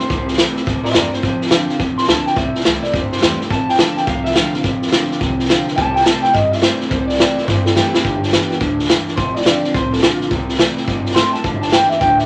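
A twangy electric guitar through a small old amp opens this upbeat, rollicking rockabilly excerpt, playing a clean solo across its full 12.3 seconds over a brisk, swung 4/4 feel. Beneath it, a second electric guitar at the edge of break-up works a low riff, slightly broken-up and treated with spring reverb. A picked dreadnought acoustic with fresh strings fills in the accompaniment from the background with a full-bodied tone, while a pizzicato upright bass adds a woody, growly thump underneath. The vintage drum kit sits up front with hi-hat, a tight kick and a medium-tuned snare, its sound gritty and saturated with a rolled-off top, and it drops in a fill from 7.5 to 8.0 seconds. The chords move among C, F and G, and a moderate small-room reverb gives the whole band a close, lively presence.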